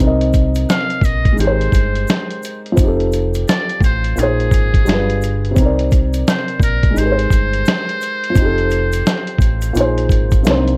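Hazy and reflective, this lo-fi hip hop excerpt in C minor moves at 86 BPM with a swung 16th-note feel, as a muffled, pitched-down sampler-style drum kit with a thumpy kick sits up front beside a woody, boxy upright piano colored by cassette tape and a low-pass filter, a round, punchy fingered electric bass holds the low end, a grainy egg shaker lingers in the background from 0.3 seconds, and a buzzy, breathy trumpet with metal mute carries the jazz-style melody from 0.7 seconds with light vibrato over chords cycling from Cm7 through Abmaj9, F7 and Bb9sus4, all in a light reverb.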